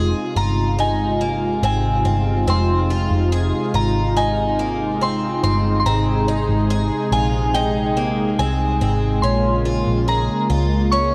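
A straight, unhurried 4/4 pulse carries this ethereal, melancholic dream pop fragment, cut from a longer piece, as the chords move from Fm7 to Abmaj7 at 5.9 s and Bbm7 at 9.2 s. A round, punchy, foam-muted electric bass sits up front beneath a smooth, detuned sawtooth pad with chorus, while a picked twelve-string acoustic guitar plays shimmering, octave-doubled arpeggios with subtle chorus, tape echo and a hint of finger squeak. Above them a pure, gentle FM synth bell carries the high melody through chorus and tape echo, all set in light digital reverb with a dark, warm production.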